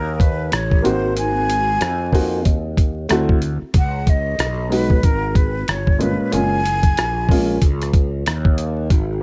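A swung 93 BPM groove in 4/4 from a gritty, compressed sampler-style drum kit, with thumpy kick, hi-hat and rim click, carries this smooth, cool jazz-hop excerpt in F# major, where a growly fretless electric bass with lush chorus anchors the low end, a woody upright piano with audible action noise joins as accompaniment at 0.8 s, and a breathy flute with vibrato and slapback echo sings the melody until 7.6 s, all set in a small room with vinyl crackle.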